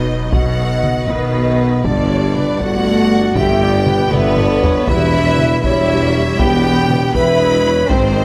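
Set in a rolling 6/8 at 79 dotted-quarter beats per minute, this majestic, adventurous stretch of epic orchestral film score is cut from a longer piece and moves from B to G and then settles on E minor. A close, dry taiko ensemble struck with heavy sticks enters at 0.3 seconds and drives the pulse, with a drum fill from 4.1 to 4.9 seconds leading into the final chord. A focused, bowed violin section carries the melody with lush vibrato. It sits over a second, richer violin line in the background and a pure, crisp-attacked flute ensemble playing its own second line. A French horn section holds sustained chords with a classical warmth. Woody violas supply the accompaniment, while smooth, even cellos, distant double basses and a soft-attacked tuba anchor the low end, all bathed in the generous reverb of a scoring stage.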